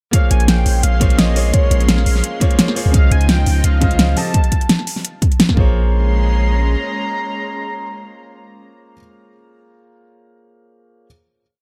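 A velvety, chorused synth lead sings hook phrases over a clear, intimate grand piano, a thick detuned pad, a deep sine 808 bass, and a punchy overdriven kick with fat snare and metallic hi-hats in this lush, dreamy liquid drum and bass piece at 171 BPM in Bb minor, where the drums drop out at 5.6 seconds and the piano rings on alone from 9.0 until 11.1 seconds.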